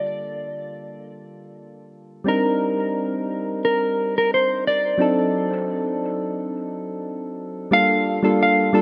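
A straight 4/4 pulse at 88 BPM carries this smooth, warm chillout excerpt in G minor, moving through Gm9, Cm9 and D7b9 before returning to Gm9 at 7.7 s, where a brief new section begins. Up front, a mellow electric guitar plays the melody in a dark, clean, fingered tone with tape echo, while soft electric-piano-like synth keys accompany with round, triangle- and sine-shaped notes that strike quickly and decay, shaded by a filter sweep, chorus and tape echo. A moderate plate reverb with a long 3.7-second tail surrounds both parts, and the top end is rolled off above 10.7 kHz, keeping the sound soft and mellow.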